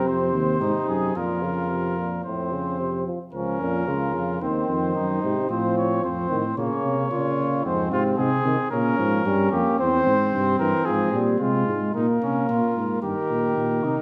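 Heard through a moderate scoring-stage reverb, this short cut from a longer imitative canzona for brass ensemble moves at a driving yet contemplative 111 BPM in Bb minor, with a mellow, up-front trumpet carrying the melody over a dark, close-miked second trumpet, a distant, roomy euphonium with light vibrato in accompaniment, and a smooth-topped tuba with light vibrato anchoring the bass, all four playing throughout the 14 seconds as the harmony moves from Cdim/Eb through a central passage that returns at 12.0 seconds to Bbm.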